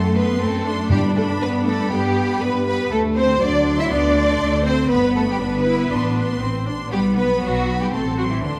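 Bowed string sections open together in this lively, cheerful classical-period orchestral passage in G major at 119 BPM with a rubato feel: the violins carry a high, smooth melody with vibrato over a lush, up-front second violin line, even violas, focused cellos and distant, expressive double basses, while soft-mallet timpani add a round G between 0.9 and 1.6 seconds, set in the reverberant sound of a recital hall.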